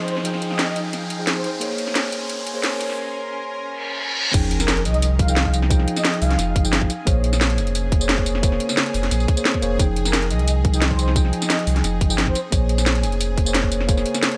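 A riser, reverse cymbal and sub drop open this soulful, rolling excerpt of liquid drum and bass at 176 BPM in F minor alongside a mellow, clean tine electric piano, a breathy flute-like synth lead with chorus, vibrato and digital delay, a filter-swept, shimmering ambient pad with a detuned, ethereal, sidechain-pumped glow, and a layered electronic kit of crash, metallic hats, tambourine and cracking snare, before the drop at 4.3 seconds brings in a tight electronic kick and a deep, round sine sub bass up front beneath the Fm9 and Bbm9 chords.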